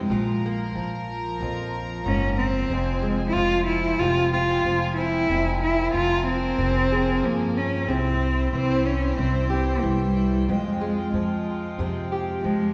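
A dark, bowed cello carries the melody up front in this melancholic, intimate acoustic folk piece. It is a single player with light vibrato, a soft attack and a smooth top, played sul tasto and miked close. The tune moves at 92 BPM in a straight 4/4 in F harmonic minor. A fingerpicked steel-string acoustic guitar supplies a warm accompaniment beneath it, while a pizzicato upright bass adds a woody, thumpy low end that also sits up front. Further back, a distant chamber string section holds bowed chords with a pure, floating tone. The harmony passes through Bb5, Fm, C and Fmadd9, and the whole passage, cut from a longer piece, rings in a recital-hall reverb with a 1.8-second tail that suggests a church or concert hall.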